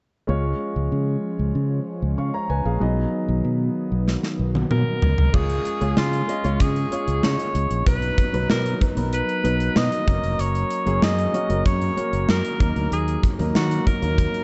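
A clear, intimate grand piano and a round, punchy fingered bass open this uplifting, romantic 1980s-style pop excerpt, joined almost at once by an airy, detuned sawtooth pad with chorus that hangs in the background until 5.3 seconds. A gated drum kit with a punchy kick and bright cymbals bursts in with a fill at 4.1 seconds, and a forceful alto saxophone with light vibrato takes the melody from 4.7 seconds. The dark production sits in light studio reverb.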